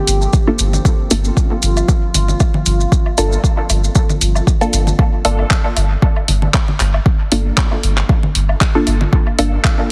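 A lightly swung 4/4 groove at 116 BPM drives this cavernous, hypnotic dub techno excerpt in G minor, resting on a Gm7 chord. An overdriven electronic kick sits up front from 0.3 s, joined by an overdriven deep house kit of handclaps and hi-hat with dub echo, while layered woodblock and congas hover in the background with overdrive, echo and sidechain pumping. Close, dry, grainy maracas add acoustic texture until 5.0 s. Beneath them, a round, soft sub bass holds G1 and pumps with the sidechain, and muted, detuned sawtooth chord stabs pluck through phaser, 12-bit sampler crunch and dub echo, with a filter sweep running across their opening half. A warbling, nostalgic lo-fi pad sustains mellow chords through chorus, phaser and its own reverb, also stopping at 5.0 s. The whole mix carries light reverb and a heavily compressed, radio-like sound.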